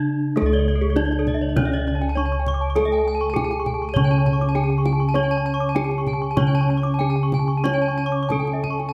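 Closely miked with light reverb, this ceremonial, brilliant fragment of Balinese gamelan moves at 99 BPM in 4/4 with uneven beats, its bronze metallophones ringing with the shimmering beats of paired tuning. A bright, horn-mallet metallophone carries the melody over an airy, wooden-mallet accompaniment in the background, while round, mellow bossed gongs struck with padded beaters sit up front as the bass. At 0.4 s a tight kendang played with soft hands enters alongside a dark, smooth arpeggiating metallophone, and a second horn-mallet metallophone adds its own arpeggios from 0.5 s.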